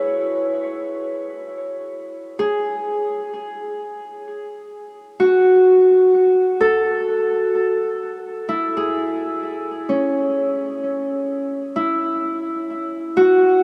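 Ambient and serene, this spacious excerpt at 64 BPM in 3/4 sets a solo Celtic harp, fingerpicked, bright and ringing up front with a touch of delay, moving through C#m7, F#m and A in F# minor inside a huge, wet reverb and a dark, warm production.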